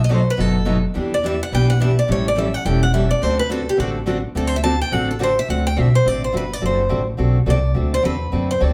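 A brisk 212 BPM swing in 4/4 drives this charming excerpt of acoustic string jazz manouche in D mixolydian, with an upright bass played pizzicato on gut strings, its woody, dark, thumpy tone sitting up front. Over it, a picked steel-string acoustic guitar takes the solo for the full 8.7 seconds, its bright, boxy parlour sound lifted by plate reverb. A second picked guitar supplies accompaniment with an auditorium-sized body, while a third, set in the background with fresh strings and audible finger squeak, comps until 5.3 seconds. The harmony moves through B7, Em7, A7 and D7 early in the opening section, which is then repeated. The whole group is heard from further back in a club room with a wet reverb.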